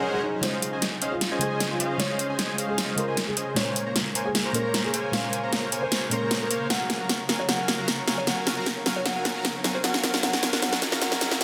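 Euphoric and lush, this future bass passage moves at 153 BPM in 4/4 with a half-time feel, cut from a longer piece and unfolding as one long build-up over Dbmaj7, Bbm9, Gbmaj7 and Ab7. A fat, detuned sawtooth polysynth carries the riff with chorus and a filter sweep, while a dark, boxy grand piano plays the melody through a low-pass filter and tape echo, also under a filter sweep. An ethereal pad with octave-up shimmer sustains chords in the background, and a very quiet, thumb-plucked concert harp adds ringing arpeggios that drop out at 2.9 seconds and return at 6.7 seconds. A soft, round pluck with chorus and tape echo supplies accompaniment between 0.4 and 6.7 seconds, the same moment a faint electronic swell gives way to the big-room drum kit. Up front, the layered kit pairs a huge snare with metallic hats through a running drum fill, as a riser returns near the end, all set in a lush hall reverb within a dense, heavily limited modern master.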